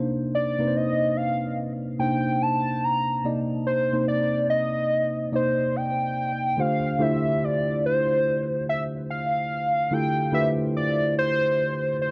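A tine electric piano opens this late-night R&B excerpt, its worn, slightly out-of-tune tone set up front with a subtle chorus as it lays down Cm9 and later Dm11 chords at a swung 72 BPM. From 0.3 seconds a hollow, woody square lead carries the melody above it, its sustained, detuned voice evolving through chorus, vibrato and analog delay. Light digital ambience gives the introspective pair a soft sense of space as the harmony shifts at 6.6 seconds.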